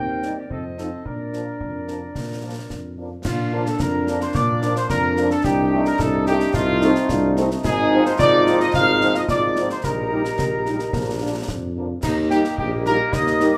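The mellow trumpet section carries the melody in this rousing, spirited military-style march for wind band, moving in a straight 2/4 at 109 BPM from Bb major into Eb major at 7.6 seconds, with a mellow tuba bass, a mellow euphonium and a warm, smooth-topped woodwind section as second lines, and a distant, roomy French horn section adding accompaniment. At 3.3 seconds a hollow, airy small flute group with vibrato joins in the background, while a clear, vintage-toned trombone section lays down sustained chords. Concert snare, bass drum and clash cymbals sit close and dry with bright cymbals, set in a moderate large studio reverb in this fragment cut from a longer piece.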